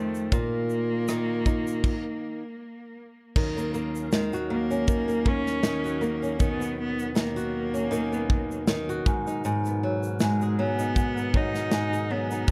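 A lightly swung groove from a tight, small-room acoustic drum kit of kick, rim click, shaker, snare and crash carries this tender, wistful acoustic pop excerpt, where a boxy, fingerpicked flamenco guitar with finger squeak and a focused, smooth-topped bowed cello melody with vibrato and delay sit up front, and after a stop from 1.8 to 3.4 seconds a fat, lightly overdriven tonewheel organ with key click, chorus vibrato and slow rotary speaker enters in the background, the whole cut shaped by a dark production and light reverb.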